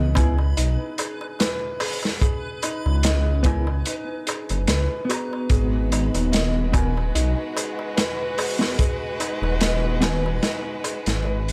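Gritty and saturated in a small room, this hypnotic, brooding trip hop excerpt at 73 BPM in G# minor rests on a deep, rumbling detuned saw bass and a crunchy, up-front breakbeat kit with a tight kick, while a clean, compressed electric guitar with tremolo, sampler grit and tape echo accompanies a felt-muted upright piano whose boxy arpeggios carry audible action noise, a clay-shelled darbuka and a dreamy reversed swelling texture sit in the background, and a warm bowed violin section with vibrato and portamento adds sustained chords from 5.5 s before the fade-out begins at 9.9 s.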